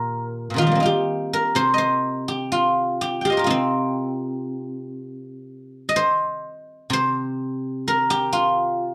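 Chinese traditional solo music for plucked strings, longing and elegant, unfolds at a slow, free-flowing 62 BPM in 2/4, with uneven, rubato beats in the C yu mode. A single guzheng, played with fingerpicks, sits up front with a bright, silvery, ringing tone across a range from Bb2 to G5. Moderate studio reverb and a dark overall production frame the instrument, and a new section begins at 5.5 seconds in this brief cut from a longer piece.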